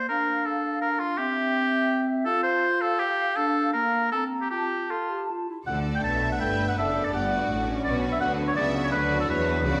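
This fragment of a quick classical-period orchestral movement in triple time opens with woodwinds alone: a clear solo oboe sits up front, a dark, vintage-toned clarinet plays beneath it, and an airy flute section adds a line with a crisp attack and rolled-off highs. The mood is urgent and dramatic, and the pulse gives and takes with a rubato feel. At 5.7 seconds the clarinet and flutes fall away and the harmony shifts as the strings and horns arrive, while the oboe carries on through to the end at 9.8 seconds. A rich violin section, smooth and close with vibrato, takes the melody as a second violin section supplies an even, bowed line beneath it. In the background a focused viola section adds accompaniment, a mellow French horn section holds sustained chords with a smooth top, and a lush, distant cello section joins a double bass section in the bass. A wet recital hall reverb surrounds the whole ensemble.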